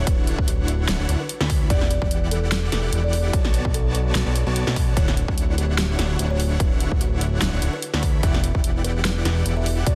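A dense, heavily limited modern master with little reverb carries this euphoric, playful future bass fragment at 147 BPM in a half-time 4/4 feel with light swing, moving through Dmaj7, Em7 and Bm7 in D major. Huge, detuned supersaw chords with a cassette-tape tint pump against the sidechain over a fat, wave-folded analog bass sitting up front. A buzzing, woody kalimba with digital delay rings in the background, while an overdriven big-room kit with a massive snare and hi-hat joins a punchy, up-front electronic kick from 0.1 seconds.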